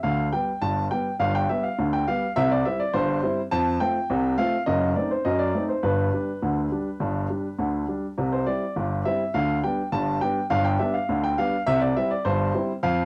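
Ragtime piano in C major, lively and playful, moving at 103 BPM in a straight 2/4. A single grand piano carries the whole 13.1-second excerpt alone, ranging from F#1 up to A5. Its tone is warm, present and polished, placed up front in the sound, with a cassette tape character. The harmony moves from G to C and F, passes through an F#dim7, and returns through G and C, settling on C at 11.7 seconds. The home recording has light reverb, and the clip is cut from a longer piece.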